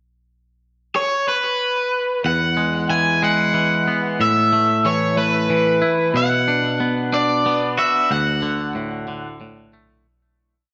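A short, soaring post-rock piece in a slow 6/8, euphoric in mood. A bright, overdriven garage guitar enters at 1.0 s with a motif-based melody built in sentence-like phrases, joined at 2.2 s by a clean, compressed, twangy electric guitar picking arpeggios beneath it, both up front and soaked in spring reverb and tape echo. A wet studio room, a dulled top end and a faint mains hum lend a raw, homespun character before the music fades out from 8.1 s.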